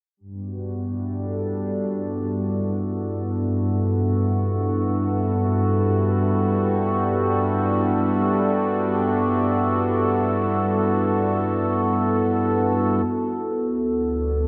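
A smooth, detuned analog synth pad sits up front in this ambient piece, holding mellow sustained chords from 0.2 s in G major, opening on Gmaj7. Beneath it, a quieter analog drone built from sawtooth and pulse waves warbles and evolves in the middle register, and both synth voices carry a chorus effect. The music floats in free time with a warm, weightless mood, bathed in a wet spring reverb. At 13.1 s the harmony moves to Dadd9 as a filter sweep passes over the pad. Near the end, at 13.9 s, a deep, ominous, rumbling bass drone with its own reverb enters underneath before the excerpt is cut off.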